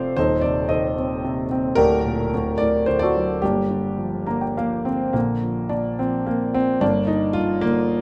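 Classical solo piano in a lyrical, rubato 3/4, brooding and bittersweet, cut from a longer piece. A worn, intimate grand piano sits up front in a moderate studio reverb, its action noise audible as it ranges from D1 to Bb5, moving from diminished and minor harmony through a D chord to a Gm7. A short fill from 4.0 to 5.2 seconds leads into a second section that settles from Bb back to G minor.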